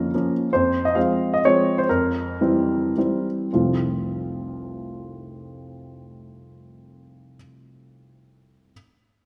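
Dotted rhythms in 3/4 drive this wistful, nostalgic romantic dance, played with rubato at a tempo that ranges from 96 to 155 BPM and slows over the first 3.5 seconds. A solo baby grand piano, intimate and up front, spans F1 to F5 with short sustain and audible action noise, set in a moderate concert hall reverb. The brief excerpt moves from Bbm/F through Fm and C7/F before settling on F as a new section opens at 3.5 seconds.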